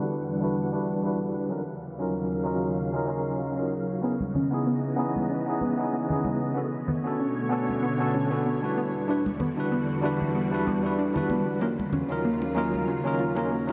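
A lightly swung sixteenth-note groove carries this relaxed, wistful sunset chillout excerpt, where a barky tine electric piano and a silky vintage string machine sit up front under a filter sweep and lush hall reverb, a barely audible cabasa ticks from the start, and a dark, round pluck arpeggio enters in the background at 4.0 seconds, joined at 4.2 seconds by close, bright congas and bongos, all within a glossy 1980s-style digital sheen.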